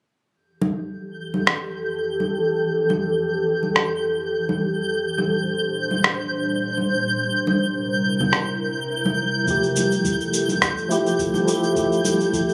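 Sunset chillout at 105 BPM in F major, blissful and swung, this excerpt floats on an ethereal, detuned pad with ensemble chorus and a filter sweep, moving through Fmaj9, Bb69 and C7, while a twinkling granular texture adds FM sparkle high above. Soft-handed acoustic congas ring from 0.6 seconds, and a gritty, up-front electronic rim click and shaker settle into the groove. A bright, clean tine electric piano with tape echo arrives at 9.4 seconds, joined at 9.5 seconds by a deep analog kick, all heard as if captured on a phone in a compressed club space.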